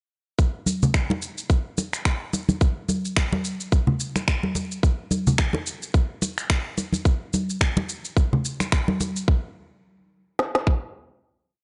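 Downtempo groove at 108 BPM with a swung sixteenth feel and a mystical mood, where an organic electronic drum kit with a tight, soft kick and woody snare sits up front alongside close, bright congas, while tape-warm electronic shaker and finger snaps re-recorded in a large room fill out the layered beat from 0.4 seconds until the groove gives way to a final hit at 9.3 seconds, all in a dry, gritty sound with digital ambience.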